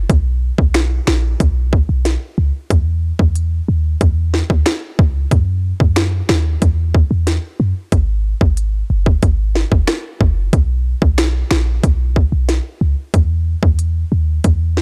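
Dry and dark in production, this sunny, bouncy dancehall excerpt at 92 BPM in straight 4/4, tuned to A4 = 438 Hz, sets a deep, boomy sine-toned 808-style bass with a fast attack and decaying notes between F#1 and F#2 up front from the start, joined at 0.1 s by an overdriven electronic island pop drum kit of tight kick, sharp snare, smooth hi-hat, rim clicks and finger snaps that runs to the close at 14.8 s.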